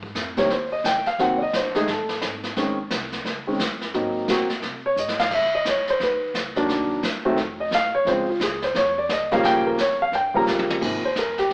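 Playful and sophisticated, this swinging jazz piano trio excerpt has a woody upright piano up front carrying the melody from 0.4 seconds, while a thumpy gut-string upright bass sits in the background. A distant, roomy brush kit with dark cymbals and a punchy kick adds short drum fills at 5.0 and 10.5 seconds, as the harmony moves from Abmaj7 through rich seventh, ninth and eleventh chords to settle on Ab69 at 10.8 seconds. The trio plays live together in one large studio room with moderate reverb, and the whole take has an AM radio sound.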